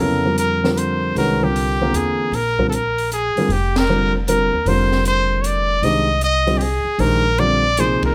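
Swinging in 3/4 at 154 BPM, this brief, cool and spiritual modal jazz fragment in F dorian rests on an F9sus4 chord as a forceful, bright trumpet with plate reverb carries the melody up front with scooped notes and light vibrato, an intimate grand piano with audible action noise accompanies beneath, a woody pizzicato upright bass holds the low end, and an acoustic drum kit with dark cymbals, a high-tuned snare and a boomy kick joins at 0.4 seconds, the band striking accents together at 3.7 and 8.0 seconds in a moderate studio ambience.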